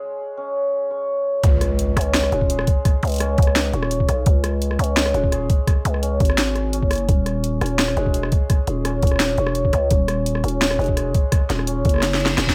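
A growling, buzzy 808-style bass with tube saturation anchors this tense, spacious half-time drum and bass cut, arriving at 1.4 seconds under a shimmering, hammered santur whose delayed arpeggios open the track alone through a filter sweep. At the drop, a thumpy, pitched-down electronic kick and an overdriven kit of cracking snare, rim clicks and bright hats sit up front, with an electronic impact marking the entry in the background. Light reverb gives the mix its sense of space, and a drum fill from 12.0 seconds is joined by a reverse cymbal at 12.2 seconds as the excerpt cuts off.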